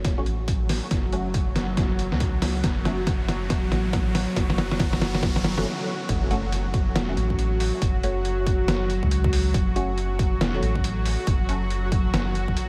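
Half-time swing sits on the 16ths at 139 BPM in 4/4, giving this deep dubstep cut in F# minor a slow, heavy, meditative gait that stays on a single F# minor chord. A punchy, layered electronic kick, re-recorded in a large room, anchors the groove from the start alongside a gritty, pitched-down sampler-style kit whose compressed hi-hat and medium-tuned snare sit up front, both carrying studio reverb. Beneath them a soft, round sub bass with a triangle and square-wave tone and tube saturation holds the low end, while a tense, string-like drone with slow attack, vibrato and its own reverb sustains chords above. A muted, nasal sawtooth chord stab plucks and decays in the background, coloured by phaser, lush chorus and dub echo. A build-up with a drum fill leads to a brief break, and a background riser from 2.1 seconds lands as an impact when the drop arrives at 6.1 seconds, all within a dreamy, reverb-soaked mix dusted with vinyl crackle.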